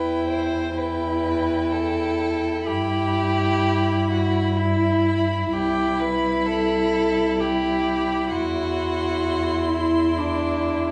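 Classical chamber music: a slow, romantic string quartet movement in triple time, yearning and solemn, with a flexible rubato pulse, heard as a brief fragment of a longer piece. A solo violin bows the melody high in its range with a rich, smooth-topped tone and vibrato, while a clear second violin, placed up front, carries a lower line, and the viola adds a focused accompaniment. A distant, even-toned cello anchors the bass as the harmony drifts from E minor shades toward C major colors, all set in a moderate recital-hall reverb.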